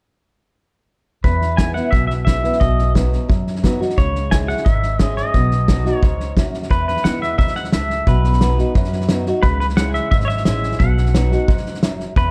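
A clean, compressed pedal steel guitar carries the melody from 1.2 seconds, played with fingerpicks and slide and shaped by volume swells. This is a down-home, heartfelt honky-tonk and classic country excerpt in E major, moving at a brisk 176 BPM in a straight 4/4. Beneath it, a picked acoustic archtop guitar supplies boxy accompaniment with audible finger squeak, while a pizzicato upright bass on gut strings adds a woody, thumpy low end. A natural country drum kit sits up front in a small room, with a fat snare, punchy kick and hi-hat driving the beat. The harmony cycles through E, B, C#m and B, with a second pass beginning at 6.7 seconds and the parts running to about 12.3 seconds. The production is dark and warm, with light reverb.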